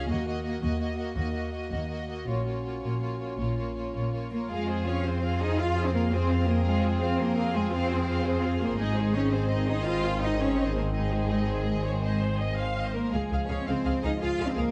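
Moving in 12/8 at 111 beats per minute counted in dotted quarters, this short cut from a heroic adventure film score feels soaring and heroic. Violins carry the melody with a lush, vibrato-rich tone and soft attack, while a second violin line runs beneath, and violas add a clear, intense accompaniment. Up front, a rich, even double bass section anchors the low end alongside expressive cellos, the bowed strings playing throughout. A dark, distant French horn section holds sustained chords during the opening build-up over Ebm and Bbm, then gives way at 4.5 seconds to a bright, tight trombone section that sustains chords in the background as the harmony moves through Fm, Ab and Db. Close, detailed microphones and light reverb keep the ensemble intimate yet full.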